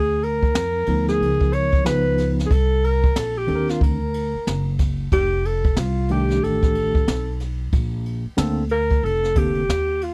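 Warm and relaxed, this short jazz-hop excerpt sways in a swung 4/4 groove with a dry, close sound that recalls a 1970s studio session. A breathy alto saxophone carries the melody from the first moment, its mellow, jazz-style phrasing marked by vibrato and scooped notes, heard both up front and with a distant, roomy quality. Beneath it, a pizzicato upright bass gives a woody, dark foundation, while a brushed drum kit joins at 0.2 seconds with dark cymbals, a high-tuned snare and a boomy kick. A tine electric piano enters at 0.9 seconds, its clean tone shimmering with fast tremolo through a combo amp as it comps through jazzy chords such as Db13, Cm9 and F13. At 7.7 seconds the harmony settles on Bbmaj9 and the saxophone takes a solo for the closing stretch.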